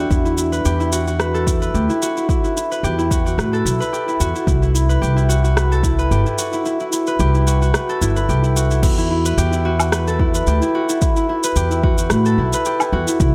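A light studio reverb gives this short cut from a longer organic downtempo piece an earthy, mystical air, set in E minor at 110 BPM in 4/4 with a gentle swing on the sixteenths. Up front, a warm, ringing, fingerpicked concert harp plays arpeggios in a mid register, its notes trailed by tape echo. A woody, dark upright bass with steel strings sits beside it, plucked pizzicato with a growly, thumpy character and a sidechain pumping that makes it breathe with the beat. An electronic, produced afro-pop drum kit adds crash cymbal, rim click, shaker and woodblock, while a deep, overdriven electronic kick drum anchors the groove. That kick drops out from 6.7 to 8.8 seconds, and the harmony moves from Em7 to Cmaj7 before settling on Em as a new section opens at 8.8 seconds.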